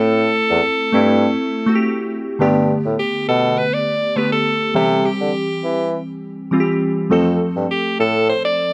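A straight 4/4 afrobeats groove carries this mellow, sultry fragment, where an edgy, punchy alto saxophone with scooped notes and digital delay leads over glassy, chorused digital keys with a filter sweep, while a soft-attacked bassoon with light vibrato holds the bass until 8.3 s, all in a dark, moderately reverberant studio sound moving through Am, Gadd9, C and F.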